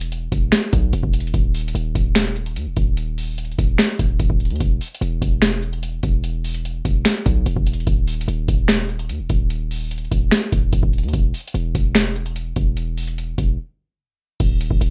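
Hip hop and trap at 147 BPM in a half-time feel, this brooding, hard-hitting cut pairs a booming analog drum machine with a deep kick, crisp snare, metallic hats, finger snaps and crash, all re-recorded in a large room, against a punchy, sine-based 808-style bass with a noise layer and fast attack, both up front in a rough home demo mix with light reverb, before a break at 13.6 seconds ends in a tape stop at 14.0 seconds.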